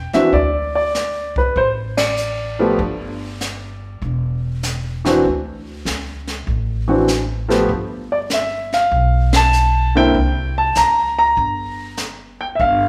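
A swung 4/4 at 98 BPM sets a playful, sophisticated tone in this short jazz piano trio excerpt in G mixolydian, cut from a longer piece. The concert grand carries the melody up front, its tone open with deep bass and long sustain, while the upright bass sits close by with a woody, thumpy gut-string pizzicato. Entering at 0.1 seconds, the brush kit sounds airy and polished, with dark cymbals, a high-tuned snare and a boomy kick under the ride and hi-hat. The whole band hits accents together near 1.9 and 9.2 seconds, and the harmony moves toward a G9 as the theme begins again at 7.7 seconds. The trio plays live in one room, bathed in a generous studio reverb.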